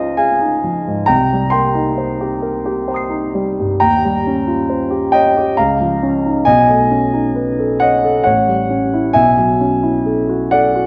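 A warm, natural grand piano sits up front from the very first moment of this hazy, dreamy impressionist solo piano fragment, cut from a longer piece, moving in a rubato 3/4 around 67 BPM and tuned to A4 = 436 Hz. It spans A1 to C7 through lush harmonies that drift from Dbadd9 and Cm7 through Eb13 and B13 to A6 and B9sus4, all wrapped in a wet scoring-stage reverb and the worn, warbling pitch drift of old cassette tape.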